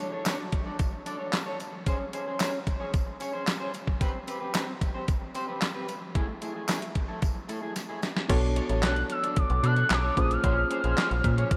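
A twangy electric guitar riff at the edge of break-up with subtle chorus opens this slick, late-night early-eighties boogie funk excerpt at 112 BPM. At 0.3 s it is joined by a crisp 8-bit drum machine with a thumpy kick, handclaps and a tape-warm, up-front sound, along with a jingly tambourine in the background until 8.2 s. After a drum fill, a metallic FM bass and a mellow tine electric piano enter at 8.3 s over shifting ninth chords, and a smooth, gliding portamento lead with vibrato, phaser and diffuse ambient delay arrives at 8.8 s. The dreamy mix is soaked in cathedral reverb, and the passage is cut from a longer piece.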